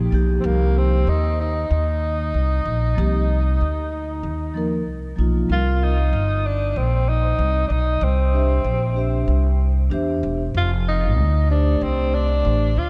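Swung sixteenths in 4/4 give this smoky, mellow jazz-hop fragment its relaxed, lazy gait, anchored by a woody, growly pizzicato upright bass sitting up front while soft-mallet vibraphone rings with a slow motor vibrato underneath. At 0.4 s a breathy, intimate tenor saxophone enters with a whispered subtone and scooped notes, trailed by a diffuse ambient delay. The harmony moves from Cm7 through C7 to F69, and a lush hall reverb soaks the mix in a dreamy haze as the passage shifts into a new section at 5.5 s.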